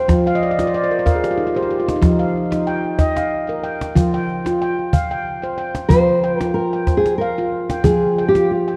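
World meditative music for tuned percussion, hypnotic and unhurried at 93 BPM in a lilting 3/4 with a light swing, set in F dorian and cut from a longer piece. A ringing handpan of nitrided steel, struck with the fingertips and touched with delay, carries arpeggios from start to finish and opens with a fill, while a classical, thumb-plucked nylon-string guitar with fresh strings states a full-bodied melody at the outset and returns at 5.9 seconds, and a close, snappy cajon played with soft hands keeps time alongside. Everything sits up front in a wet echo chamber with a long tail, coloured by the worn, warbling pitch drift of old cassette tape, as the harmony moves from F5 to Eb over F and back.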